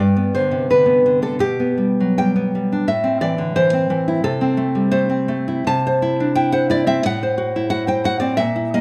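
Romantic solo classical guitar in 2/4 at 75-90 BPM, melancholic and passionate with a rubato feel, its full-bodied, fingerpicked nylon-string guitar sitting up front and ranging from G2 to A5 as the harmony moves from G through Am and C to F#dim/A in a moderate recital hall reverb across this 8.8-second fragment of a longer piece.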